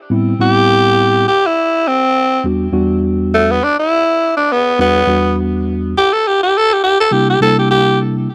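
A mellow tine electric piano opens this soulful, smoky blues fragment in E minor at 102 BPM, its clean tone heard through built-in speakers as it accompanies through Am7, Em7 and C7 with a gentle swing. At 0.4 s a growling tenor saxophone takes the solo up front, breathy and raspy with a light vibrato and a punchy, gritty edge in a pop style. The close, dry 1970s-style studio sound carries only light reverb.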